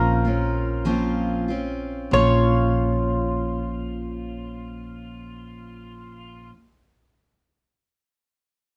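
Mandolin, pedal steel guitar, picked steel-string acoustic guitar and woody fretless electric bass all sound together from the start of this reflective, haunting acoustic folk piece, slowing down over the first 2.1 seconds before the harmony settles from a minor added-ninth chord to a plain minor chord. The mellow, double-strung mandolin carries the melody, while the twangy pedal steel, played with fingerpicks and slide, adds a clean, compressed second line with volume swells. The full-bodied jumbo acoustic guitar, with audible finger squeak, and the dark, round, hollow-body fretless bass sit up front, all in light reverb, in a short cut from a longer piece.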